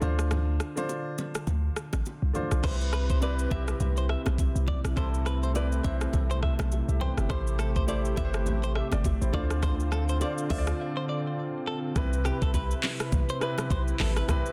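A swung sixteenth-note groove from a gritty, sampler-toned afro-pop drum kit with a knocking kick, smooth hats, handclaps, rim clicks and shaker drives this breezy, joyful afrobeats fragment, set over a deep, boomy 808-style bass, polished baby grand piano accompaniment and ringing hand-struck congas and bongos in the background, until at 2.6 seconds a smooth, warbling vintage analog pad with chorus and a bright, twangy clean electric guitar riff, dressed in spring reverb and digital delay, join the dense, heavily limited mix.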